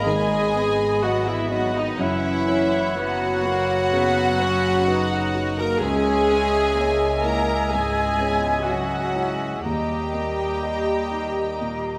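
Bittersweet and moving, this rubato cinematic film-score excerpt at 62 BPM sets a dark, sul tasto violin melody over a rich, floating viola section up front, while clarinet, oboe, airy flute and a second violin section weave second lines, a dark grand piano accompanies, mellow French horns hold sustained chords, and double basses with cellos entering at 0.1 seconds anchor the bass through G#m, F#sus4, C#madd9 and D# in a wet scoring-stage reverb.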